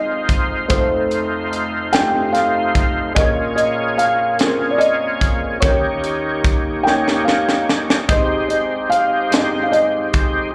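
Slow, soulful and hopeful gospel in a swaying 6/8, where a felt-muted upright piano sings a mellow, intimate melody with slapback and tape echo over a woody upright piano accompaniment, gritty overdriven tonewheel organ chords turning through a slow rotary speaker, and a crisp fusion drum kit with a high-tuned snare and punchy kick that adds a fill from 6.9 to 8.1 seconds, all heard as a live gig through the venue's PA with club reverb, cut from a longer piece.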